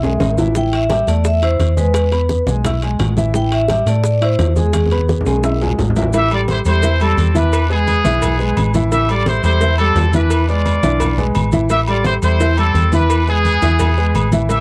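Fiery and passionate, this salsa excerpt opens with a ringing vibraphone melody, its slow motor vibrato shimmering over a woody upright piano with audible action noise and a round, dark hollow-body electric bass sitting up front, all driven by tight high-tuned bongos and cowbell, low-tuned congas, grainy maracas, metal-shelled timbales and agogo bells, and a raspy guiro entering at 0.2 seconds. During a drum fill, the vibraphone stops at 5.8 seconds, and a punchy, vintage trumpet section takes the melody from 6.2 seconds, up front with bright vibrato as the harmony swings between Am7 and E. The close, dry 1970s-style studio sound carries light reverb.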